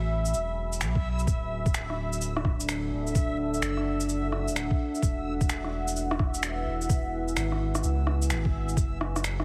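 Future garage at 128 BPM with a 64% swing on the 16ths, rainy and wistful, cut from a longer piece and moving through F#m7, Dadd9 and E6 before landing on F#7(no3). A dark, detuned sawtooth pad with chorus and reverb holds sustained chords over a round sine sub bass, both pumping against the sidechain, while a reversed, granular texture swells brightly above; electronic shaker, finger snaps and rim click come in at 0.3 s, joined at 1.0 s by a muffled, thumpy, pitched-down kick sitting up front. The whole mix has a heavily compressed radio sound with vinyl crackle and light reverb, and the kick and percussion carry a tape-warm tone.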